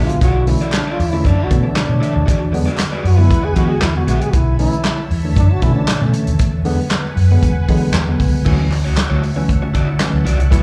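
A live club sound carries this funk excerpt, heard through the venue's PA with a touch of club reverb yet little overall room wash, giving it a funky, driving feel at 116 BPM in straight 4/4, centered on B dorian. A mellow, close-miked trombone takes a jazz-style solo with vibrato and slapback echo, playing until 6.5 seconds over chords moving from Bm11 to E9 and back, before the harmony shifts to Dmaj9 at 8.5 seconds. Underneath, a dark, round, foam-muted fingered electric bass sits up front with a punchy, amped tone, while a soul drum kit with a tight kick, medium-tuned snare, dark cymbals, hi-hat, crash and handclaps sounds roomy and rolled-off on top. A worn, slightly out-of-tune tine electric piano punches out lightly overdriven stabs with slapback echo, and a raw garage guitar adds picked, overdriven accompaniment that drops out at 4.3 seconds and returns at 8.4 seconds. Filling the background, a silky string machine holds slow-attack chords through its ensemble chorus, and a very quiet group handclap adds hollow, band-limited human percussion.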